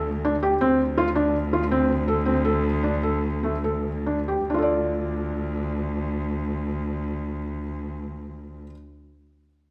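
Contemporary chamber music in an uneven 5/4 meter, this short piece cut from a longer work feels urgent and restless, moving in D minor at a tempo between 132 and 166 BPM with a straight feel. A felt-muted upright piano plays arpeggios from A3 to D5 across the whole passage, its tone soft, mellow and intimate, warm and up front. Beneath it, a single bowed cello holds the bass on a low D2, rich and expressive, with vibrato, a soft attack and portamento. From 1.3 to 4.5 seconds the music slows down, and at 4.5 seconds a new section begins on a D minor chord. A moderate recital-hall reverb gives both instruments a sense of space while keeping them near.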